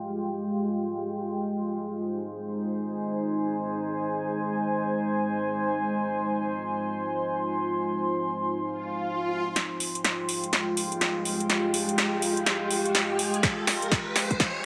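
A gritty, moody haze of detuned sawtooth pads opens this bouncy bass house passage in F minor, cut from a longer piece at 124 BPM with a swung sixteenth-note feel. From the start, a deep, dark ambient pad with a sub-octave weight and wave-folded, ring-modulated edges holds sustained chords from Fmadd9 to Ab. Beside it sits a warbling, nostalgic, lo-fi pad, and both are soaked in chorus and built-in reverb, pumping against the sidechain. A filter sweep runs through the opening stretch, and a background swell and riser arrive at 8.8 seconds. At 9.6 seconds the chords return to Fmadd9 and a build-up begins, as an up-front dance kit with a punchy snare and metallic hi-hats plays a drum fill. A punchy electronic kick joins at 13.4 seconds, all under a moderate plate reverb.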